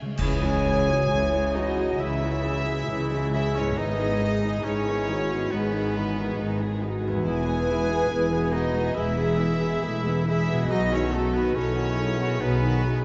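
Rubato in 4/4, this bittersweet, sorrowful cinematic film-score fragment opens with a very quiet, ringing, fingerpicked concert harp at 0.0 s; a dark clash of cymbals and concert bass drum accents the entry at 0.2 s and is gone by 2.0 s, while a distant, floating violin section carries the melody over second lines from a more intimate violin section, a mellow, hollow flute and a warm solo cor anglais, with background violas, roomy French horns holding chords, and cello and double bass sections on the bass, the strings bowed sul tasto and everything bathed in a vast, echoing cathedral reverb.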